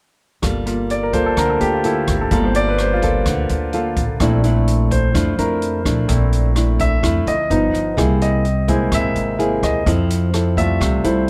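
Lightly reverberant and intimate, this smooth, wistful bossa nova fragment cut from a longer piece moves at 127 BPM in 4/4, with an up-front grand piano whose audible action noise colours its lead line over a classical nylon-string guitar with thumb-plucked notes and finger squeak, a woody pizzicato upright bass, and an open jazz kit of hi-hat, rim click and boomy kick, all moving from Gm9 through Bbmaj9#11 and C7alt to settle on Fmaj7.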